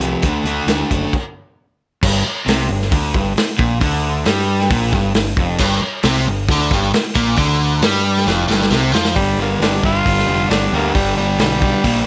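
Lightly reverberant, this sunny, swaggering classic rock excerpt at 134 BPM rides an up-front overdriven semi-hollow guitar riff over a growling, round electric bass and a muffled, punchy vintage drum kit, with a very quiet, woody old acoustic guitar picking briefly at the start and again at the close, a stop just before 2.0 seconds, a biting second overdriven guitar riff from 5.6 seconds, and a drum fill leading into a raspy, forceful tenor saxophone solo at 9.2 seconds.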